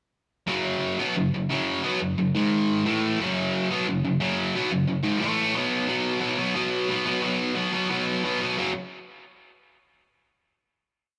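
A straight 4/4 pulse at 178 BPM drives this short, aggressive punk piece in F# dorian, tuned slightly sharp to A4 = 441 Hz. A lone bright, distorted electric guitar, double-tracked and up front, plays driving eighth-note power chords from 0.5 seconds, moving through a riff into an outro at 5.9 seconds before landing on a final F#5 chord at 8.6 seconds. The rough rehearsal-room recording places it in a moderate stone-room reverb that gives the angry playing a raw, enclosed edge.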